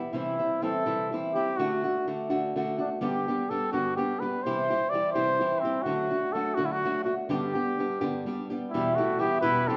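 A wet recital-hall reverb surrounds this short cut from a longer mariachi piece, lending it a romantic, proud air in a straight 6/8. Up front, a small, boxy nylon-string guitar is fingerpicked from the opening at 0.0 seconds, cycling twice through C, D and G before turning to E minor. Over it, a solo trumpet carries the melody in a classical style, its tone mellow with a soft attack. At 8.7 seconds a second trumpet slips in beneath it with a lower line, sounding punchy yet distant and roomy, set in the background. The change to E minor at that moment marks the start of the brief closing section.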